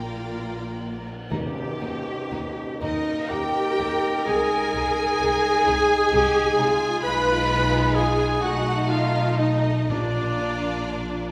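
A smooth violin section with light vibrato carries the melody of this serene, lyrical slow romantic movement for symphony orchestra, unfolding in a rubato 6/8 at 37-44 BPM counted in dotted quarters, in Eb major with tuning at A4 = 439 Hz. Beneath it, a focused, distant second violin line, a viola section with expressive portamento, a dark, lush cello section and a close, rich double bass section sound together from the start. At 1.3 s a mellow French horn section enters with sustained chords, joined by a band accent, articulate hard-mallet timpani on calf heads, and a bright tam-tam held in the background until 5.2 s; the timpani returns near the close. From 2.8 s a shadowy, very quiet clarinet, a close-miked cor anglais and an airy silver flute with a crisp attack and rolled-off highs add second lines. The harmony moves from Bb to Eb, through Ab/C and Abm/Cb to B7, before settling back on Bb. 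A wet recital hall reverb of about 1.7 s places the orchestra in a church or concert hall, and the passage is cut from a longer piece.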